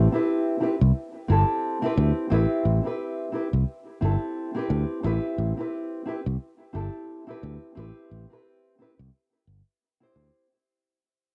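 This home recording on cassette has a homespun sound in a moderate studio reverb. It fades out across its whole length of about 10.5 seconds, having been cut from a longer piece. The music is a wistful sunset chillout groove in A minor at 88 BPM in 4/4, with a gentle swing on the 16ths, resting on a single Am9 chord. A small, thumb-plucked nylon-string guitar plays the accompaniment between C4 and C5, sitting up front with its acoustic tone coloured by cassette tape, plate reverb and tape echo. Beneath it, a warm, direct fingered electric bass holds the low end from G1 to D2, also up front and run through tube saturation, before stopping at 10.3 seconds.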